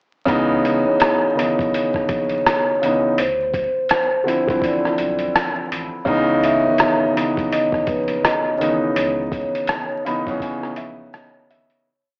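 Hazy and nostalgic, this short lo-fi hip hop piece is built on a woody, intimate upright piano playing looped drop-2 chords with grace notes and short fills, over a muffled, thumpy sampler-style drum kit with a slumped, off-grid beat of kick, hi-hat and rim click, and a deep, sparse sub bass with octave sitting in the background. At 3.2 seconds a mellow, close-miked vibraphone with soft mallets enters, ringing out short song-like motifs as the chords move from C#m9 to Dm9 and back. The whole piece carries a home-cassette character with vinyl crackle, small-speaker sound and spring reverb, and it fades out from 9.0 seconds, with the piano adding a closing fill from 9.7 seconds.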